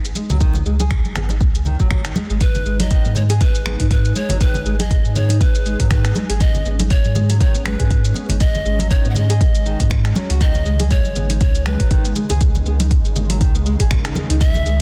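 A round, sine-like sub bass pumps under sidechain from the start with an afro-pop kit of finger snaps, metallic hi-hats and shaker, soon joined by thumb-plucked nylon-string guitar arpeggios carrying delay, finger squeak and pumping, ringing close congas in the background, and a deep, up-front electronic kick. This hypnotic afro house groove moves at 120 BPM in 4/4 with a swung sixteenth feel, resting on G# minor throughout. At 2.4 seconds a breathy, chiffy pan flute melody with delay enters over a smooth, detuned sawtooth pad with chorus and sidechain pumping, the mix pressed into a dense, heavily limited modern master with small-room ambience.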